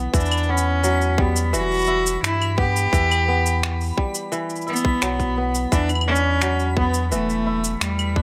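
Autumnal and wistful, this short folktronica passage in E dorian moves at a straight 86 BPM, with a rich, reedy cello carrying the melody up front in a period-style, gut-string tone with light vibrato. A crisp, ringing kora plays fingerpicked arpeggios over a round, deep sine sub bass, while a twinkling granular texture with an octave-up shimmer sparkles in the background through its own reverb. An overdriven, tight electronic kick and tape-warm shaker, claves and finger snaps enter at 0.1 s, all set in a light digital ambience as the harmony moves from Emadd9 to Bm/E at 5.7 s.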